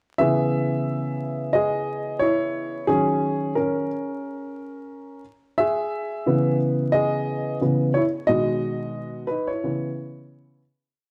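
A dark, woody upright piano plays alone from 0.2 seconds, comping freely in rootless voicings over a swung hip hop feel, its action noise audible and up front in a small, lightly reverberant room, with vinyl crackle lending the short, smoky, nocturnal piece a vintage haze before it fades out from 8.3 to 11.0 seconds.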